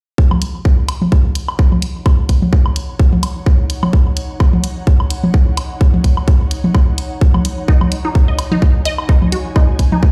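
Up front, a tight, tape-warmed electronic kick drives this clinical, hypnotic minimal techno cut at 128 BPM in Eb minor with a 16th-note swing, joined by an analog-flavoured toms-and-woodblock part with delay, a quiet layered hi-hat, and an ethereal, airy pad on a sustained Ebm7 that fades in from 0.2 seconds, pumping under ensemble chorus and built-in reverb, while a juicy, squelchy resonant blip pluck joins at 7.7 seconds through phaser and dub echo, all heard as if played on a big sound system in a bare room.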